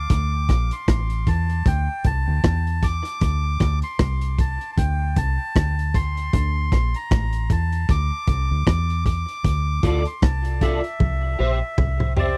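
Dry and close, this excerpt has the feel of a 1970s studio room with little reverb, setting a heavy, deep dub reggae groove at 77 BPM in 4/4 with a swung sixteenth feel. The crunchy breakbeat kit sits up front, its tight kick, hi-hat, rim click and toms sounding gritty and saturated with a dark, rolled-off top. Beside it, the deep fingered electric bass is round, punchy and foam-muted, anchoring the low end from the start. A reedy, nasal melodica carries the melody through a tape echo, its breathy plastic-case tone floating above the rhythm section. At 9.8 seconds a dark, scooped electric guitar at the edge of break-up joins with chorus and tape echo as the harmony moves from D minor to C, and a drum fill from 11.0 seconds carries the passage to its cut.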